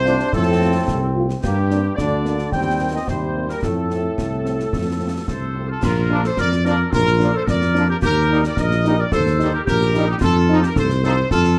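A mellow trumpet section carries the melody of this rousing, festive military-style march for wind band from the start, joined by a vintage-toned woodwind section with vibrato, a clear, distant euphonium on a second line that drops out at 5.5 s, and an up-front, dark tuba anchoring the bass. Roomy French horns sit in the background while a bright trombone section holds sustained chords, and close, dry concert snare, bass drum and clash cymbals drive the 2/4 step. The ensemble plays in a classical style in a large studio space with moderate reverb, moving from F through G minor to B-flat and E-flat before closing on F in this short cut from a longer piece.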